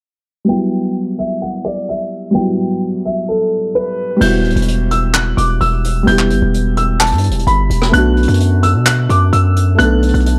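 A half-time trap groove in 4/4 anchors this dark, hard-hitting hip hop excerpt, where a soft, felt-muted upright piano with a vintage tone provides accompaniment beside a mellow, boxy concert grand carrying the melody through delay, with audible action noise, under a filter sweep until 4.2 seconds. At that point a heavy, aggressive distorted 808-style bass with a noise layer and fast attack arrives up front, alongside a natural-sounding jazz brush kit in a small room, with dark cymbals, crash, handclaps, hi-hat and rim clicks. Harmony moves from Emadd9 to Bm7 at 7.9 seconds, and the whole is framed by light studio reverb and a low-pass filtered production.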